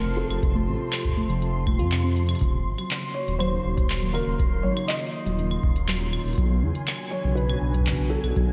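Glitchy and eerie, this short cut from a longer IDM piece moves at 121 BPM in a straight 4/4, sitting in Eb dorian with chords shifting from F to Ebm7 at 2.4 seconds and Bmadd9 at 6.4 seconds. A felt-muted upright piano carries the melody with a soft, boxy, intimate tone, touched by slapback echo and delay, while a warbly tape-like pad holds nostalgic, lo-fi chords colored by chorus, phaser, built-in reverb and sidechain pumping. Underneath, a dark detuned saw bass sits up front with a deep, rumbling, beating presence, and a flickering grainy texture hovers high above with its own reverb. A harp-like synth pluck enters almost at once with ringing arpeggios, shaped by a filter sweep, chorus and tape echo. The booming analog drum machine brings claves, handclaps and metallic hi-hats from 0.3 seconds, joined by a deep electronic kick at 0.4 seconds, with a drum fill at 2.2 seconds, all set in a lush hall reverb that gives the mix a big arena sound.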